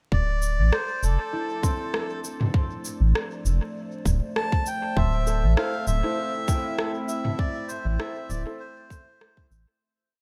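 This short, hazy ambient dub piece in D minor moves at 99 BPM with a lightly swung 16th-note feel, opening over a bed of vinyl crackle. A deep, round analog bass carries a dark, up-front dub-style line, while a tight, overdriven electronic kick keeps a soft, slow pulse. A sparse, echoing beat of rim clicks, shaker and low toms comes from an overdriven electronic kit heard in a large room. Up top, a reedy, breathy melodica plays mellow call phrases soaked in dub echo. From 1.2 s a warbling, nostalgic tape-like pad adds slowly shifting, detuned chords through chorus and reverb, moving from Dm7 to Am/D. Far back, a bright concert harp rings out thumb-plucked arpeggio loops of unequal length through tape echo, and from 5.6 s a woody upright piano drops sparse, echoing chord stabs before the piece fades out from 6.6 s.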